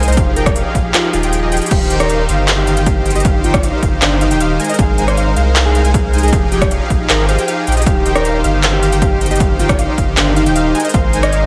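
The saturated sub bass, deep, thick and up front, pumps beneath the mix with the rest of the sidechained parts in this euphoric, bright future bass cut from a longer piece, set in a half-time feel. A dark, clean electric guitar carries the melody with tape echo, while a soft supersaw, smooth and detuned, plays a sustained riff and a lush unison pluck sits in the background with decaying arpeggios coloured by cassette tape and echo. Overdriven drums, re-recorded in a large room, drive the groove, with a punchy electronic kick and a kit of crisp hats, crash cymbal, handclaps and rim clicks. The kick drops out briefly between 1.3 and 1.7 seconds before returning until 11.0 seconds. Chords cycle through Fm7, Eb6 and Ab69 under light reverb, with lossy compression artefacts audible in the sound.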